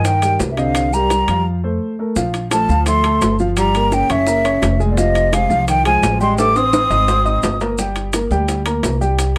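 Low-tuned bongos set back in the mix, grainy compressed maracas and dry, ringing metal-shell timbales drive this fiery, sophisticated Afro-Cuban jazz excerpt at 171 BPM in straight 4/4, where a hollow, close-miked concert flute carries the melody up front with vibrato over a whispered, subtoned tenor saxophone second line, both stopping at 7.6 seconds, while a natural-sounding baby grand piano accompanies through rich harmony moving from Cm9 to Gm and a woody, thumpy gut-string upright bass plucks pizzicato beneath, with a break at 1.5 seconds and a drum fill at 6.4 seconds set in a moderate club reverb.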